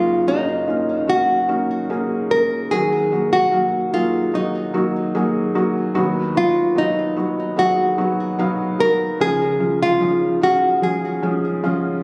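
A straight 4/4 pulse at 74 BPM carries this emotional, hopeful pop ballad excerpt in F# major, where a bright, fingerpicked nylon-string guitar with delay sings the melody up front over a soft, felt-muted upright piano with a mellow, vintage tone, both playing throughout the 12 seconds through chords moving from F#6 to D#m, B/D# and C#, all heard as if captured on a phone in a reverberant room.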